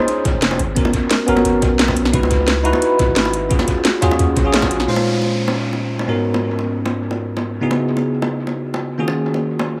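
A bell-like, bright tine electric piano with analog chorus and delay opens over round, low-tuned bongos trailing dub echo, as filtered garage hats and a cracking snare, a knocking electronic kick and a deep, sine-like 808-style bass with tube saturation join in for a dreamy, rolling liquid drum and bass passage at 175 BPM in Bb phrygian, moving from a rootless Bbm11 through Abm11, Dbm11 and Ebm11 chords with a band accent at 4.5 seconds before the beat and bass drop out at 4.9 seconds, leaving the piano and bongos with a faint electronic downlifter in an echo-heavy, spring-reverbed mix cut from a longer piece.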